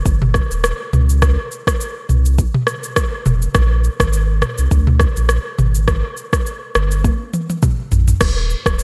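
A lightly swung 103 BPM afrobeats groove in Eb major sets a joyful, sunny mood, with an up-front electronic afro-pop kit of deep kick, rim click, shaker, crash and toms riding over a round, sine-like sub bass that sits just as far forward, all inside light reverb, before a drum fill from 7.0 to 8.2 seconds closes this short cut from a longer piece.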